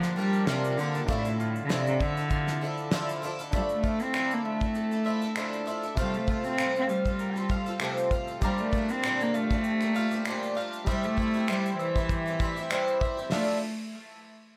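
A lightly swung 16th-note groove at 98 BPM in 4/4, set by a cloth-damped, thuddy drum kit of finger snaps, hi-hat, tight kick, shaker and fat snare, carries this reflective, tender acoustic pop excerpt in D minor, where an up-front bowed cello sings a soft-attacked, floating melody with tape echo over a shimmering, octave-doubled twelve-string guitar, round mandolin arpeggios also touched by tape echo, and a polished grand piano in the background, within moderate studio reverb as the chords move through Bb6, Dmadd9, F/C and C.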